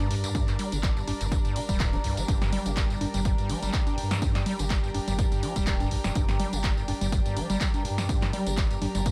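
A dry, close-sounding cut from a longer hypnotic, raw acid house track at 124 BPM in G minor, built on sustained floating bowed strings, a rubbery resonant acid bass riff with overdrive and dub echo, a thick saturated sub bass, a warbling nostalgic pad with phaser, and a lightly swung analog drum machine of congas, handclaps, hi-hat, snare and tambourine, joined at 0.3 seconds by a punchy tape-warm electronic kick, while the strings, acid bass, sub bass and pad pump to the sidechain over a single G minor chord.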